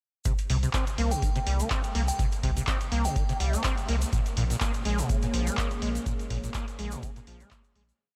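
Raw and hypnotic, this short acid house piece rides a swung sixteenth-note groove from start to finish. A deep analog kick pounds four-on-the-floor, joined by metallic closed and half-open hats and claps from an electro drum machine, both re-recorded in a large room, while a grainy, bright egg shaker plays hand-played sixteenths. The squelchy, resonant sawtooth acid bass carries a 16-step line with accents, slides and filter sweeps, roughened by overdrive, chorus and delay, and a thick, saturated sub bass sits up front with off-beat notes and sidechain pumping. A crystalline FM bell with chorus and delay drifts in the background in short phrases, and a moody, detuned pad arrives at 4.7 seconds with slow-attack chords that also pump. The harmony moves from C7 to Bbm7, and the track fades out from 5.4 seconds under a light reverb.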